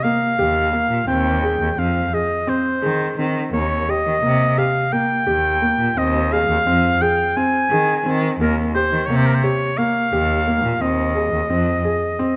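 Playful and shimmering, this short cut from a longer contemporary chamber piece moves at 173 BPM in eighths, counted in a straight 7/8 and set in Eb mixolydian with tuning at A4 = 441 Hz. A solo oboe carries the melody up front in a classical style, its clear tone touched with light vibrato and a smooth top as it ranges from Bb4 to Ab5. Grand piano arpeggios sit beneath it with a natural sound, and both instruments play from the opening through 12.4 seconds. A single bowed cello enters at 0.4 seconds to hold the bass line, rich and focused with vibrato and also placed up front, before stopping at 11.8 seconds. The harmony rocks between Ebadd9, Ab6/Eb and plain Eb, while a moderate concert hall reverb with a 2.1-second decay gives the ensemble an open sense of space.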